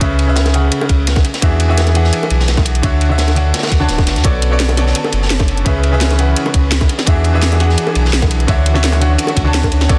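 A bright grand piano plays from the very start of this rolling, melancholic liquid drum and bass excerpt, its brilliant, long-sustaining accompaniment trailed by a digital delay. Beneath it sits a deep, round sine sub bass, up front and mellow, while the drums come from three layered kits: a tight, overdriven electronic kick; a garage kit with a cracking, overdriven snare and hi-hat; and a gritty, saturated breakbeat kit with dark cymbals and a rolled-off top, high-pass filtered to sit back in the mix. High-tuned bongos join at 0.4 seconds, compressed and tucked in the background. From 4.2 seconds a muted string section adds veiled, con sordino sustained chords with soft attacks and vibrato, also kept in the background. The harmony circles through C#m7, E7, Dmaj9 and Bm9, giving the dense, heavily limited track its wistful pull under a light studio reverb.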